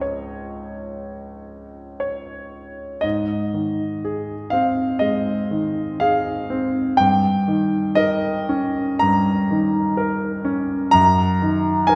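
A solo grand piano opens this brief cut from a longer piece, a romantic nocturne in the classical tradition that feels serene and tender from its first Db major chord. The playing breathes with a flexible rubato in a steady four-beat metre, and the piano spans from the deep register up into its bright upper reaches. At 3.0 s the music moves into a new section centred on Ab, passing through Eb7/G at 7.0 s before settling on Ebm/Gb near the close. The piano's tone is clear, smooth and vintage, sitting up front in the sound. A generous, wet reverb from a large scoring stage surrounds it, while the top end is gently rolled off, giving the recording a warm, unhurried glow.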